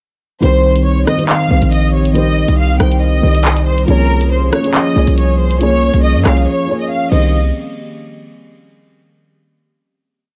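A dark, dry production frames this short, tense half-time drill piece, where a distant, lush string section loops an expressive bowed violin melody with vibrato and digital delay over boxy, mellow grand piano chords repeated like a sample, while a warbling lo-fi pad enters at 1.2 s in the background, a punchy, heavy 808 bass sits up front with long sub-bass notes and pitch slides, and an electronic drill kit drives it with bright skipping hi-hats, handclaps, rim clicks and crash cymbal, all before a brief break at 6.5 s and a final hit at 7.3 s.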